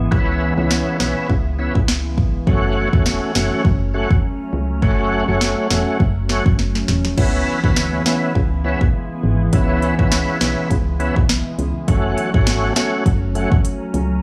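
Dancehall at 102 BPM in 4/4 with a light 16th-note swing, this excerpt from a longer piece feels bouncy and tough as it moves between C#m7 and F#m. An electronic, produced drum kit sits up front with a deep kick, sharp snare, smooth hi-hats and crash cymbal, carrying a tape-warm character and dropping in a fill from 6.6 to 7.2 seconds that leads into the second section. Underneath, a solid FM bass gives punchy, round, digital notes with a fast attack that decays into a mellow tone. A full, thick tonewheel organ, lightly overdriven with chorus vibrato and a slow rotary speaker, plays accompaniment prominently in the mid register. Behind it all, a glassy, ethereal FM pad holds sustained chords with a slow attack and long release, thickened by ensemble chorus and its own built-in reverb while sidechain pumping makes it breathe against the beat. A light studio reverb gives the whole mix a modest sense of room.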